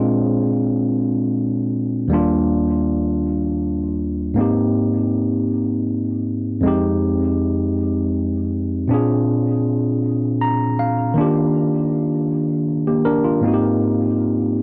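A barky, slightly out-of-tune tine electric piano plays alone through a lightly overdriven combo amp with tape echo, sounding worn and up front as it moves through lush ninth chords in a yearning, sultry R&B groove in 6/8, adding a fill at 10.0 seconds in this dry, gritty excerpt cut from a longer piece.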